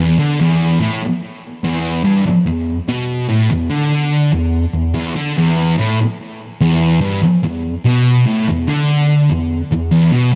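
The recording has a dark, warm production, set in a digital ambience. This sludgy, ominous metal excerpt features a single thick fuzz guitar, playing solo from 0.0 to 10.4 seconds. The electric guitar is picked and double-tracked, and it sits up front in the mix. It stays low, moving between E2 and D3, with heavy distortion and a tape echo trailing behind it. The 4/4 pulse carries a swung eighth-note feel, which gives the brooding playing a lurching heaviness.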